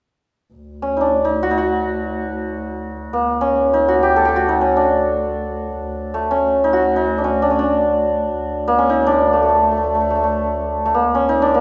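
In free, unmetered time, this stately and passionate Persian modal ensemble piece, cut from a longer work, opens with a close, bowed double bass holding a low drone from 0.5 seconds, its expressive vibrato and portamento sitting beneath a shimmering, ringing hammered santur that enters up front at 0.8 seconds to carry the melody, all set in the wet reverb of a recital hall.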